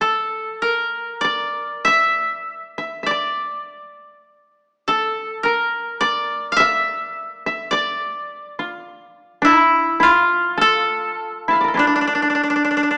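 Japanese traditional chamber music in a meditative, solitary mood, this rubato fragment cut from a longer piece pairs two fingerpicked koto up front, a warm, woody melody line joined by a mellow second line, heard through a small speaker with moderate recital hall reverb.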